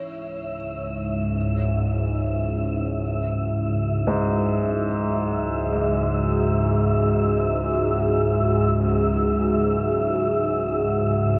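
A string-like, tense bowed drone sits up front in this ominous, desolate dark ambient excerpt in free time and C# minor, entering at 0.6 seconds with detuned sawtooth grit, vibrato, phaser and a filter sweep, beneath a deep, moody pad holding sustained chords with chorus, dark baby grand piano arpeggios trailing tape echo, and an airy, breathy wind-like texture, all bathed in huge reverb and the warbling pitch drift of worn cassette tape.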